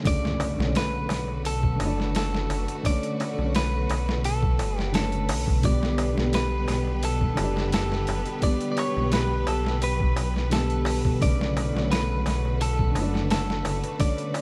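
A dark, boxy upright piano with harmonic tremolo and vintage 12-bit sampler grit opens this melancholic, cinematic trip hop excerpt in B minor at 86 BPM together with a crisp metal-shell darbuka set back in the mix, joined by a very quiet electronic impact that ends by 2.8 seconds. An overdriven, pitched-down boom bap kit with a thumpy kick and high-tuned snare sits up front alongside a rumbling detuned saw bass that enters at 0.6 seconds. A bright, clean picked electric guitar carries the melody through tape echo over bowed studio strings with vibrato, as the harmony moves from Bm7 to G and back, all beneath light reverb and vinyl crackle.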